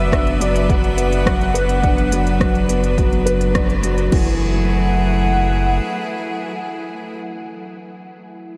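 A dreamy mix bathed in huge ambient reverb gives this short cut from a longer piece of cinematic piano and strings electronica a moving, spacious quality. It sits at 105 BPM in a straight 4/4 in F# minor, and opens on a drop over a Bm/F# chord before settling onto F#m9. A felt-muted upright piano carries a soft, boxy riff with delay, while a bright string quartet holds sustained bowed chords with light vibrato and chamber intensity. Above them, a velvety synth lead of detuned sawtooth and triangle voices sings the melody through chorus and delay. Below, a round sine sub bass sits up front with sidechain pumping, and a punchy electronic kick pairs with a deep house kit of smooth hats, rim click and crash, with a band accent arriving just before the kit drops out at 4.2 seconds. The bass stops at 5.8 seconds, and the muted piano is last to finish at 8.6 seconds.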